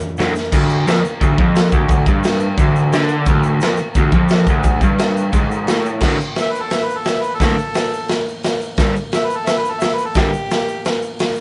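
A rowdy, raw garage rock excerpt for a small band, charging along at 175 BPM in a straight 4/4. A gritty, saturated acoustic drum kit sits up front with a punchy kick, a medium-tuned snare, dark cymbals on the crash and hi-hat, and toms, its small room pumping around it and a fill arriving at 0.4 seconds. A crunchy, double-tracked electric guitar drives a picked, overdriven riff from D2 to G3 over D5 and later G5 chords, while a grainy egg shaker ticks along in the background. At 6.4 seconds a clear harmonica pushed through overdrive takes a pop-style solo between G4 and E5. The band plays live in one room with moderate studio reverb, and the sound is rolled off at the top, giving the whole a dusky, unpolished edge.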